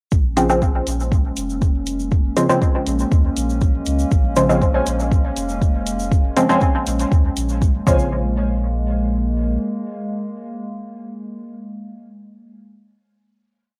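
Deep and nocturnal, this short dub techno piece in Bb minor moves at 120 BPM over a single Bbm7 chord, with a four-on-the-floor electronic kick up front, closed hi-hats, a grainy hand-played egg shaker in sixteenths and a round, soft sub bass carrying a dub-style line under a nostalgic, wave-folded tape-like pad with 12-bit sampler grit. Muted, filtered sawtooth chord stabs echo sparsely through chorus and phaser, joined from 4.5 seconds by a detuned, dusty pluck riff, while pumping sidechain and a moderate spring reverb give the cassette-recorded home sound its hazy depth. The groove drops away at 8.1 seconds, the sub bass lingering until 9.6 seconds while a final hit of pad, stabs and pluck rings out.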